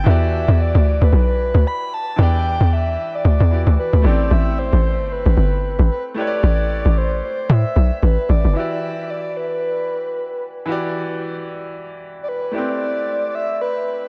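Amapiano with a late-night, deep mood and a swung sixteenth-note feel, this excerpt pairs a breathy, flute-like synth lead carrying the melody through chorus and a diffuse ambient delay with clear, open grand piano chords moving between Em7 and Am9, while a hollow, bouncy log drum bass sits up front until it drops out at 8.6 seconds, all set in a dreamy mix soaked in lush hall reverb.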